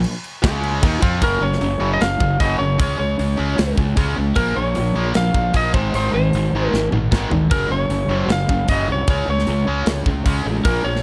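A heavy, aggressive hard rock cut with light reverb, where a growly fuzz bass and a tight metal drum kit with bright cymbals and a tight kick open together up front, joined at 0.4 seconds by a double-tracked, high-gain distorted riff guitar. From 1.2 seconds a dark, slightly broken-up lead guitar carries the melody, compressed and set in slapback echo and plate reverb, over chords moving through Gb5, Db5, Bbm and Ab. A drum fill at 6.7 seconds drives back into the Gb5 chord as the excerpt runs on.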